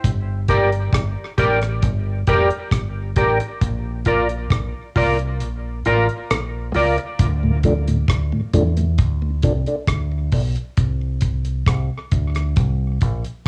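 Spacious and hypnotic, this dub reggae excerpt rides a slow straight 4/4 groove from a damped 70s drum kit of tight kick, hi-hat and rim click, with the kick dropping out from 5.4 to 7.2 seconds, under a deep, round fingered electric bass that stays up front throughout. A bright, picked clean electric guitar colored by analog chorus, tape echo and plate reverb plays over a Gm to Bb progression until 7.0 seconds, and then a mellow tonewheel organ with key click and slow rotary speaker takes over from 7.4 to 11.1 seconds as the chords shift to Dm and D7(no3). The home cassette recording carries a light studio ambience, lending the dry, airy drums, the guitar and the organ a cassette tape character.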